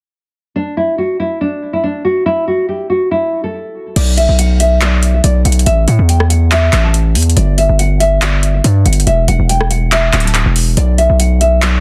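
An eerie, hard-hitting trap and hip hop cut, taken from a longer piece, moving at 141 BPM in 4/4 with a half-time feel in B minor. A dark, woody nylon-string guitar carries the melody from 0.6 seconds, fingerpicked with the full-bodied tone of old strings, softened by a low-pass filter and trailed by tape echo, and it plays alone until 4.0 seconds. At that point a distorted 808-style bass arrives, heavy and saturated with a noise layer over its sine core, its fast attack and decaying notes sitting up front and aggressive. An electronic trap kit enters with it, adding overdriven, metallic hi-hats, handclaps, rim clicks and crash cymbal. The harmony moves through Bmadd11, A5, Em9/G and Dadd9 before returning to Bmadd11, all set in digital ambience with a dense, heavily limited modern master.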